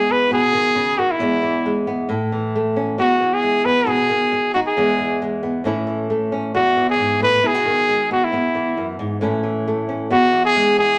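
A clear, close-miked jazz-style trumpet with light vibrato and a soft attack carries the sunny, danceable melody of this 11-second highlife fragment in E major at 135 BPM, while a fingerpicked acoustic flamenco guitar sits up front beside it, cycling through B6, E and A chords with a lightly swung feel in a reverberant studio room.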